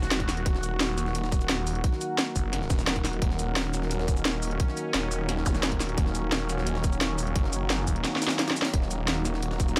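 A growling, detuned sawtooth bass sits up front, distorted and compressed on a sustained E-flat minor chord, driving this aggressive, dark excerpt of technical drum and bass at 174 BPM. A tight electronic kick and a layered kit with a cracking snare and shaker sit up front, while a gritty, pitched-up, tape-warm jungle break sits very quiet underneath and a drum fill arrives at 8.0 seconds. A bright, resonant saw pad and a deep, moody ambient pad that enters at 0.4 seconds both pump with sidechain and chorus, and a faint electronic zap flickers at 5.5 seconds amid light digital ambience.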